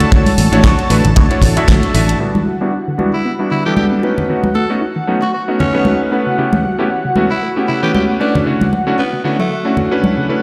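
Nu-disco at 115 BPM in E dorian with a groovy, sensual swing, this fragment of a longer piece opens with a tight acoustic kick, a fat-snared pop kit on hi-hat and snare, a round, punchy fingered bass and a twangy envelope-filtered guitar riff, which all drop out by 2.2 s. A clangy, up-front electric grand piano with 12-bit grit and a filter sweep, a thick, sidechain-pumped unison pad and dry, hard-handed congas and bongos carry on as a warbling, wave-folded pluck takes up arpeggios and a raspy, growling tenor saxophone leads from 3.1 s, the whole sound set in a lush hall with stone-room reverb.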